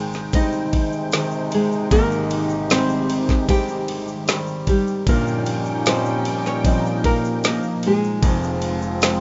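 A dry, rough home-demo mix with a dull top frames this hopeful, tender pop ballad fragment in a straight 4/4. A fingerpicked nylon-string guitar carries the melody with audible finger squeak over polished baby grand piano accompaniment, while a thick, detuned sawtooth pad with chorus holds sustained chords that move from Abmaj7 to Ebadd9/G at 5.1 seconds and then to Fm. At 0.1 seconds an electronic R&B drum kit enters up front with a knocking kick, woody snare and ride cymbal, alongside a very quiet, grainy tube shaker, and a distant, roomy French horn section adds a second line from 0.3 seconds.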